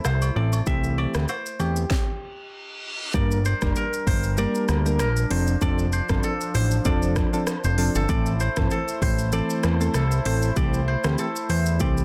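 A fingerpicked kora rings out with a crisp, delayed riff over this smooth, sultry afrobeats excerpt at 97 BPM in G dorian, carried by a fat, saturated analog bass that sits up front beside a produced drum kit with a deep kick, a sharp, softly clipped snare, smooth hi-hats, rim clicks and shaker. A background analog pad holds vintage, warbling sustained chords while round, gentle electric-piano-like synth keys with filter sweeps and ring modulation fill in the accompaniment, both shimmering with chorus, and close woodblock and agogo bells add a brief touch of percussion at the start. The groove stops at 1.9 seconds as an electronic reverse cymbal rises from 2.3 seconds into the second section at 3.1 seconds, all under light reverb in a dense, heavily limited modern mix.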